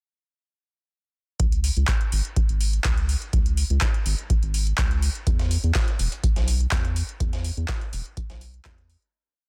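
An acid house piece with a trippy, hypnotic mood moves in a straight 4/4 groove that runs from 1.4 seconds to the end. A dry, deep electronic kick drum carries a four-on-the-floor pulse, while a booming analog drum machine adds metallic closed and open hats and a backbeat clap, overdriven and re-recorded in a small room. Up front sits a round, nasal analog bass in a low register, dark and sustained with a fast attack, playing a dotted rhythm colored by tube saturation and sidechain pumping. At 5.3 seconds a gritty, compressed breakbeat sampler-style kit joins lower in the mix, its looped break with edits bringing hi-hat, a medium-tuned snare and tambourine, all thinned by high-pass filtering. The sound is dry and dense, heavily limited in a modern master, and a fade-out begins at 6.6 seconds and carries the piece to its close.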